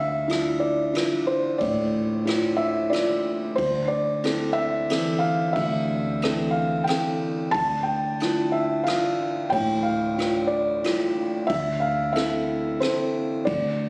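Acoustic folk-pop ballad in D minor at 91 BPM in 3/4, heartbroken and reflective, cut from a longer piece and resting on a single Dmadd9 chord. A felt-muted upright piano carries the melody up front, soft and intimate with thick felt, audible action noise and plate reverb, while a woody, growly pizzicato upright bass sits in the background on D2. A vintage brush drum kit enters at 0.3 seconds with a punchy kick, dark cymbals, ride and rim clicks, all in a moderate studio reverb with a phone-in-the-room, compressed character.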